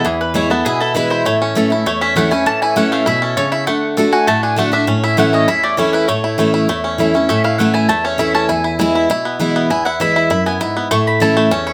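Banjo, picked steel-string acoustic guitar and mandolin start together in this lively, virtuosic bluegrass snippet at 199 BPM in A major, the twangy, fingerpicked banjo carrying the melody up front over the full-bodied dreadnought guitar while the woody, double-strung mandolin takes a solo of stabs throughout, all heard through close, detailed microphones with light reverb as the chords move from E through A and D before returning to A.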